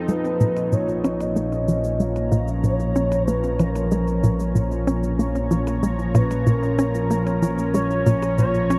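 A lush, thick unison pad sits up front from the opening moment, holding a sustained Bb minor chord over a slowly evolving analog drone in the bass, both shimmering with chorus. This short excerpt of ambient, sequencer-driven space music feels mysterious and expansive, moving at an unhurried pace in a straight 4/4. Almost at once a hollow, bouncy square-wave pluck joins in the background with a repeating riff, its detuned tone and noise layer trailing tape echo. Above it, a smooth, expressive synth lead carries the melody with vibrato and a moving notch, its mellow sawtooth voice bathed in lush chorus and tape echo. Faint electronic shaker and percussion blips flicker low in the mix, all set inside a huge, wet reverb with a dark, warm production.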